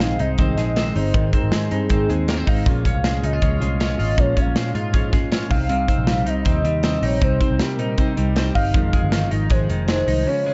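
Jangly indie pop with a breezy, bright mood, cut from a longer piece: a velvety, wave-folded synth lead with chorus and vibrato carries the melody over a dark, full-bodied fingerpicked acoustic guitar, bright, twangy twelve-string electric arpeggios with lush chorus, a round foam-muted bass and a punchy, up-front drum kit of kick, snare and hi-hat, all in a dark, lightly reverberant mix that moves from Ab through Bbm7 and Cm to Fm7.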